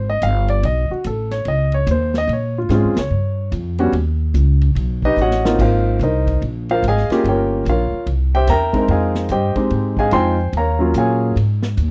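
A dry, close 1970s-style studio sound frames this smoky, swinging jazz piano trio excerpt in F minor at 145 BPM, with the intimate grand piano up front carrying the melody, its action noise audible, over chords moving from Fm9 through Bbm7, Gm7b5 and C7 back to Fm9. The woody, growly pizzicato upright bass sits forward alongside it, while the vintage drum kit, dark and smooth with dark cymbals, a rolled-off top, a punchy kick and a medium-tuned snare, stays lower in the mix. The band hits an accent at 2.9 seconds and the drums slip in a short fill at 5.2 seconds.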